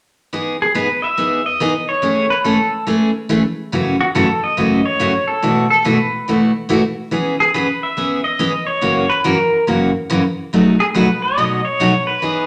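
This country piece has a down-home, playful mood, moving at 141 BPM in 4/4 with a swung eighth-note feel in E major. A picked dreadnought acoustic guitar enters at 0.3 seconds with a full-bodied, bright accompaniment, and the pedal steel guitar takes the melody from 0.6 seconds. The steel's tone is clean and twangy, played with fingerpicks and slide, compressed, and shaped by volume swells. Both guitars sit up front in a wet, large studio reverb. The harmony drifts through rich seventh and extended chords, from Emaj7 and Amaj7/E through F#m7 and B7sus4 to E6, F#7 and a closing B9. The whole passage is a single section cut from a longer piece, ending at 12.5 seconds.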